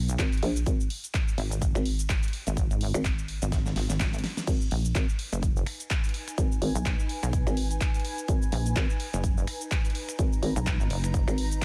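Swaggering and aggressive, this bass house excerpt at 126 BPM in G# minor swings its 16ths over a punchy, up-front electronic kick and a layered big-room kit with a huge snare, handclaps, finger snaps, hi-hat, shaker and crash, while a hollow, bouncy FM bass and a heavy, detuned pluck wobble bass with chorus both pump against the sidechain, a drum fill arrives at 3.5 seconds, the harmony settles on G#madd9 at 4.5 seconds, and a cloudy, evolving granular pad joins at 5.8 seconds.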